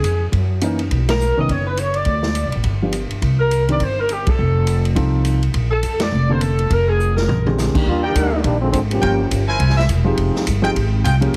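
This energetic, brassy big band swing excerpt opens with a mellow, vintage saxophone section carrying the melody with vibrato, over an up-front upright bass and a swinging drum kit at a brisk 207 BPM in 4/4 with a swung eighth-note feel. The pizzicato bass sounds woody and growly with steel strings, while the kit's punchy kick, medium-tuned snare, hi-hat, ride, crash and toms have a natural studio-room character. A warm baby grand piano fills in the accompaniment, and the band hits accents together before a drum fill leads into a new section. At 7.9 s the key moves from Bb major to Eb major and a tight trombone section steps forward with a present, lightly vibrato-tinged solo line, joined at 8.0 s by clear, smooth-topped trumpet stabs. The whole mix carries light reverb and a heavily compressed, radio-like sound.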